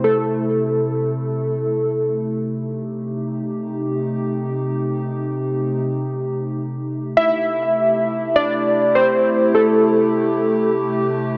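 Melancholic and glitchy, this free-time IDM excerpt, tuned to A4 = 439 Hz, rests on a detuned, nostalgic tape-like pad that holds slow-blooming sustained chords moving from Am through Cm6 to Am7, while warbly lo-fi synth keys with a ring-modulated, sub-octave edge carry a mellow, decaying melody through chorus and dub echo at the opening and again from 7.2 to 10.7 seconds, the two parts set up front inside a lush hall reverb.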